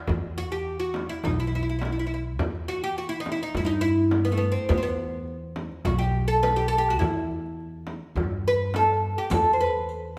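Arabic maqam ensemble music in E maqam nahawand, moving at a moderate 104 BPM in a straight 4/4, with a longing, soulful mood in this brief passage cut from a longer piece. The oud carries the melody up front from 0.4 seconds, its plectrum-plucked double strings sounding bright and fretless, ranging from A3 to C5. Beneath it, a pizzicato upright bass with gut strings gives a dark, thumpy foundation between B1 and G2. The darbuka, with its clay shell and natural skin, sits deep and distant in the background, struck with hard hands, while a large frame drum adds further depth until 9.4 seconds. A riq with dark jingles appears close and dry only at 9.3 seconds, tucked into the background. The ensemble sits in a moderate recital hall reverb, giving the performance the resonance of a church or concert hall.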